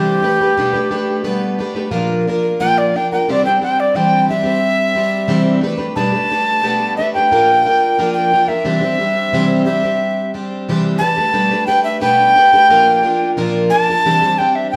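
This rock excerpt moves at 89 BPM in a straight 4/4 in C major, with an open-road, jangly mood. A plugged-in twelve-string acoustic guitar provides the picked accompaniment from start to finish, its octave-doubled strings giving a shimmering, boxy parlour tone, with the occasional finger squeak audible up front. Over it, an alto recorder carries the melody as a solo across the whole 14.8 seconds, sounding airy and woody, with tongued notes, a chiff at the attacks and expressive vibrato. The harmony cycles through Gadd9/B, Bb and Cadd9 three times. The players sound as if they were performing live together in one large studio, bathed in a generous, wet reverb that lingers about 1.2 seconds.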